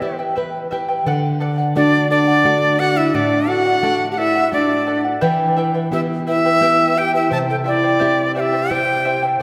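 A long church reverb surrounds this melancholic, earthy Andean folk excerpt in 3/4 at 86 BPM, where an up-front, reedy cane quena carries the melody with vibrato over a chiffy wooden pan flute second line, shimmering double-strung fingerpicked charango and a small nylon-string guitar, moving from E minor through D and back to E minor before C.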